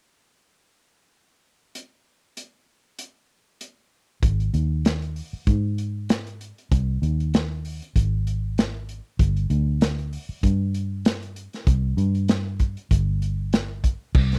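A crunchy, saturated breakbeat drum kit with dark cymbals, a tight kick and a medium-tuned snare opens this brooding, soulful straight-eighth soul blues at 97 BPM, joined at 4.2 seconds by an up-front, foam-muted fingered electric bass with a round, amped tone, all captured in a dry, close 1970s-style studio sound.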